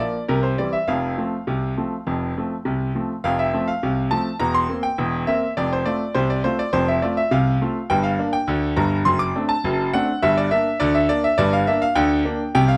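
Playful and lively, this short ragtime piano piece in F major moves at 103 BPM in a straight 2/4, with a solo concert grand that sounds brilliant and up front, its deep bass reaching down to E1 and its upper notes up to D6, set in light reverb within a dark production as the harmony passes from C and F through C7/E to Gm and D7/F# before the cut at 12.8 seconds.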